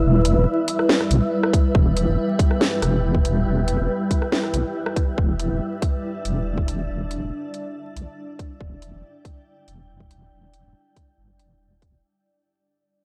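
A heavy, detuned wobble bass dominates this deep dubstep excerpt, its saturated sawtooth-and-sine tone thickened by chorus and shaped by a resonant filter sweep that runs through the whole passage. The half-time groove comes from a layered, up-front garage kit with a cracking snare, rim clicks and bright hi-hats, joined at 1.5 seconds by a tight electronic kick sitting up front. Above them, a granular cloud pad holds sustained chords on E minor, its blurred, evolving tone given a moving notch and a soft, reverberant halo. A faint, breathy noise texture drifts high in the background like wind, adding an airy, mellow shimmer. The mood is heavy yet meditative, and the gritty hardware sound with vinyl crackle and light reverb gives the track a dusty character as it fades out across its twelve seconds.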